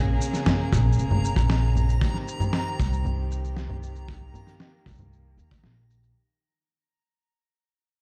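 A woody, thumpy pizzicato upright bass sits up front in this wistful, autumnal folktronica excerpt at 116 BPM in 4/4, moving from Bbm7 to Cm. Close, bowed string quartet chords with vibrato carry a filter sweep, while a compressed, pitched-down kit of electronic shaker, overdriven snare and congas enters at 0.2 seconds and a muffled, brushed kick follows at 0.7 seconds. A dreamy, reversed, detuned texture with a soft attack hovers in a small, dark room, and the clip fades out.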